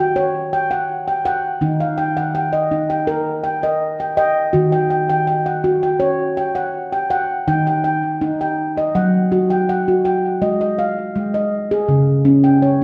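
A lush, reverberant stage sound with a touch of small-room ambience surrounds this short cut from a longer meditative world piece. A solo handpan carries everything, placed up front, its nitrided steel ringing with a mellow, airy glow under soft fingertips. Tape echo trails each struck tone, deepening the hypnotic, unhurried mood in a steady, straight four. The harmony drifts between Eb minor colours and Gb over Eb at the start, then turns toward Eb at 7.5 seconds, where a second passage begins. From there the handpan opens into moments of bare, chordless resonance with a brief Ab sonority, the instrument's range reaching from low Db3 up to G5 before the fragment ends at 12.8 seconds.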